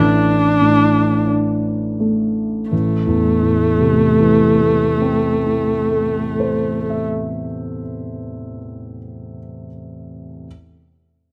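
Closely miked in a moderate recital-hall reverb, this elegiac, yearning romantic classical fragment in A minor moves at a rubato 44 BPM in 4/4, slowing over its first 2.7 seconds as an expressive, up-front bowed viola sings a low, soft-attacked melody rich in vibrato and portamento until 7.1 seconds, while a warm concert grand piano accompanies with deep bass and long, open sustain, carrying on alone to 10.5 seconds.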